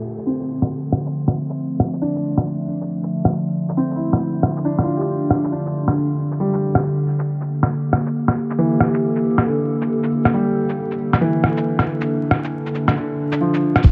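A warbling, detuned tape-like pad opens this rainy, ghostly future garage excerpt at 137 BPM with a 16th-note swing, holding Dm11 then Gmadd9/D under a filter sweep and pumping sidechain, as muffled, pitched-down electronic shaker and rim click and a soft, felt-muted upright piano with analog delay join in a huge ambient reverb dusted with vinyl crackle, until a thumpy electronic kick and a deep, round 808-style bass arrive at 13.8 seconds.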